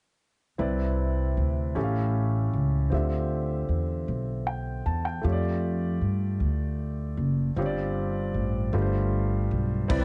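Slow gospel in 6/8 at 52 BPM in C major, hopeful and soulful, this excerpt opens at 0.6 s with an intimate grand piano, its action noise audible and its tone softened by cassette tape, over a woody, up-front pizzicato upright bass, moving through lush chords from Cmaj9 to Dm11, F69 and a suspended G9sus4. At 9.9 s a lightly overdriven tonewheel organ, with key click and its rotary speaker stopped, enters on sustained chords alongside a crisp fusion drum kit's crash cymbal and punchy kick. The sound is a dry home cassette recording with a dull top end.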